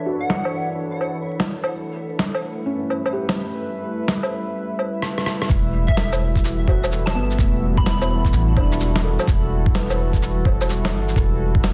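Swung sixteenths at 127 BPM in 4/4 drive this nocturnal, melancholic future garage excerpt in E dorian, cut from a longer piece and moving from Dmaj9 to A7sus4 before settling on Em11 at 5.5 seconds. A felt-muted upright piano, dark and intimate with thick felt and short sustain, plays accompaniment through dub echo and sidechain pumping, while a warbling, detuned tape-like pad holds nostalgic sustained chords with chorus and its own reverb. A faint, flickering granular texture glints until 5.0 seconds, and pitched-down, muffled snare, woodblock, rim click and shaker sit up front from 0.3 seconds onward. A plucky, bright unison lead with a square-wave bite and filter sweep blips briefly at the opening, then returns with a catchy, echoing line in the second half. After a drum fill, a thumpy, compressed kick and a deep, round 808-style bass arrive at 5.5 seconds, the bass pumping beneath the harmony. 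The dense, heavily limited master carries light reverb, vinyl crackle and a low-pass filter that softens the whole late-night haze.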